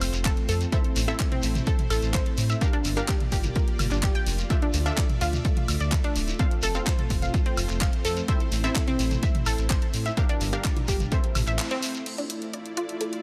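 A lush, full-bodied supersaw pad holds sustained chords over a deep, rumbling detuned saw bass, with punchy unison pluck stabs echoing through delay, all three pumping against the sidechain in this expansive, emotional progressive house cut from a longer piece. At 127 BPM in D minor, the layered house kit brings crash, handclaps, hi-hat and woodblock, while a grainy, mellow shekere sits close in the background. From 0.3 seconds a round, chorused analog pluck spins bright arpeggios with delay, and an overdriven electronic kick lands punchy and up front, carrying the room sound of a large space. Dry electronic toms and congas join in the background at 1.3 seconds, and the chords move from F through Am and Gm7 to Dmadd9. A band accent hits at 11.6 seconds, and from 12.1 seconds a filter sweep moves across the arpeggio as the harmony settles on Dmadd9, all with little reverb.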